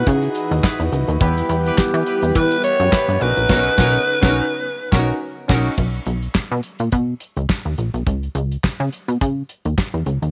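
A swung sixteenth-note groove at 105 BPM in 4/4 drives this smooth, danceable slice of early-eighties boogie funk in B major, cut from a longer piece. A dry, tight 70s drum kit with dark cymbals, handclaps and a medium-tuned snare sits up front beside a punchy, plucky analog bass, and both carry on to the end at 10.3 s. Over them, a breathy, raspy alto saxophone with slapback echo leads the melody, backed by a glossy chorused polysynth, a shimmering string machine playing very quiet sustained violin chords, and a horn section entering at 0.6 s as a second line in the background. The harmony moves from C#m11 through Em to Bmaj9, and the band hits an accent from 3.5 s into the second section at 5.8 s. There the sax, polysynth, strings and horns have dropped out, leaving bass and drums alone over a Bmaj7 with the third omitted and C#sus2 in light reverb and small room ambience.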